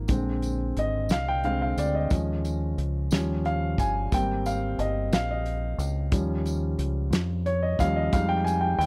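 A dry, close recording in a small room with a 1970s studio character opens this uplifting, jubilant slow gospel excerpt in 6/8 at 60 BPM, where an intimate grand piano, its action noise audible, carries the lead through chords moving from Bb7 through Eb7sus4, Eb7 and Abmaj7 to Fm7. A dark, round fingered electric bass sits up front beneath it, while a mid-forward acoustic soul drum kit with a fat snare, tight kick and rolled-off top plays hi-hat, kick and snare. A jingly tambourine sits in the background.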